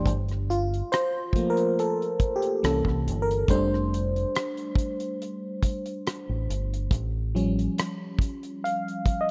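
A slow, gently swung groove comes from a damped 70s drum kit, with a tight, dry kick, hi-hat and rim click sitting up front in the mix. This short neo-soul R&B passage, cut from a longer piece, feels introspective and smooth. An FM electric piano carries the lead from 0.1 seconds, its glassy, bell-like attack and decaying tone shimmering through a chorus effect over a noise layer. Beneath it, a deep dub fingered electric bass holds the low end with a dark, round, directly amped sound until it drops out at 7.7 seconds. The harmony moves through Gm9, C7b9 and F6 before landing on Aaug7. Light reverb and small room ambience frame the recording, which carries the worn, warbling pitch drift of old cassette tape.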